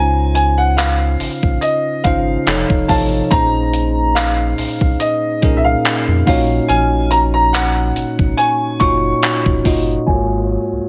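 A slow 4/4 groove with a light swing on the sixteenths sets up this tender, smooth contemporary R&B excerpt, where a gated 80s drum machine, up front and thumpy, lays down kick, handclaps, hi-hat and crash from 0.4 s, and a rubbery, hollow square-wave bass bounces underneath. A warm concert grand carries the melody up front with long sustain and a touch of delay, over a bell-like tine electric piano playing chords through Dbmaj7, F7b13, Bbm11 and Ebm9 before settling on Ab13sus4. From 2.9 s a glassy wavetable pluck, treated with chorus and delay, sparkles in the background, and the mix is dry with a low-pass filter shading its top end.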